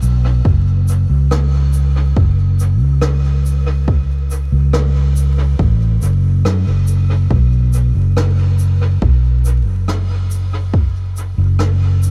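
Meditative and spacious, this ambient dub fragment, cut from a longer piece, moves at a straight 70 BPM in 4/4 with the tuning set to A4 = 441 Hz. A dark, round fingered electric bass with tube saturation sits up front throughout, spanning F#1 to F#2, joined from 0.5 s to 10.9 s by a deep, overdriven, layered electronic kick. Further back, a natural-sounding shaker and rim click with a brushed quality carry dub echo, all set in a dry mix with vinyl crackle.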